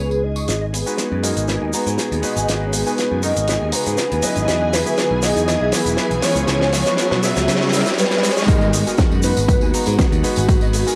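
Nu-disco with a sensual, sleek mood and a lightly swung groove, this clip comes from a longer piece recorded at home on cassette in a booth with moderate ambience. A thick, detuned sawtooth unison lead with vibrato carries the melody over lush string-machine chords that sit in the background with phaser, ensemble chorus and sidechain pumping. Beneath them, a growly, bright picked electric bass pumps along, a very quiet, clean fingered electric guitar plays a dark riff, and a clear electric grand piano with a clangy low end and long sustain adds accompaniment through a low-pass filter. A dry, damped 70s drum kit with a fat snare, hi-hat and shaker arrives at 0.5 seconds and builds with a fill, joined by a background riser from 2.3 seconds. At 8.5 seconds the drop lands with a punchy, overdriven electronic kick up front and a saturated tambourine over G#m9, following a progression that also moves through Emaj9 and C#m7.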